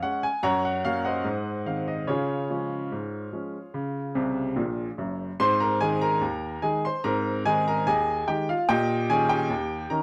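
A bright, woody upright piano carries this lively, cheerful ragtime piece alone, in a straight 2/4 at 73 BPM, reaching from deep bass notes up into its high register with long sustain and a touch of slapback echo. It opens in Db major, plays a fill at 4.2 seconds, and then moves into a new passage in Ab major at 5.4 seconds. The dry, close, 1970s-style studio sound keeps the polished piano up front in this short cut from a longer piece.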